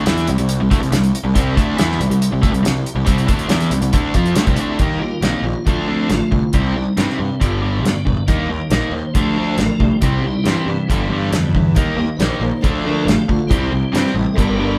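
Confident and sunny, this classic rock excerpt at 138 BPM in C major pairs an up-front bright cranked stack guitar riff, joined by a very quiet hollow-body semi-hollow guitar riff, with fuzzy overdriven picked bass and a tight, fat-snared 70s drum kit, while a piping tonewheel organ with key click and slow rotary speaker sits in the background before taking a solo from 4.8 seconds over an Eb, Dm, C, G progression, and a boxy steel-string acoustic guitar slips in very quietly at 11.7 seconds, all captured live in one room with moderate reverb.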